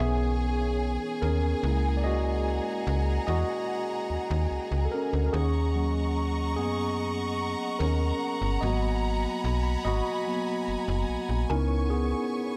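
The recording sounds dry and gritty, as if captured on hardware with a digital ambience. This slow, longing and sensual R&B piece in G# minor moves at 73 BPM in a straight 4/4, and is cut from a longer work. A bright, clean tine electric piano sits up front, heard through its built-in speakers, and carries a solo across the whole clip over chords of C#m7, F#9/C#, D#m7 and G#m9 before returning to C#m7. Beneath it, a lush studio string section holds sustained chords with a woody, bowed vibrato. A snappy FM bass with a metallic, digital attack and decaying notes stays up front until 12.1 seconds. In the background, a mellow, round mallet-like synth pluck with a noise layer, treated with chorus, phaser and tape echo, colours the opening until 1.9 seconds and returns at 11.5 seconds.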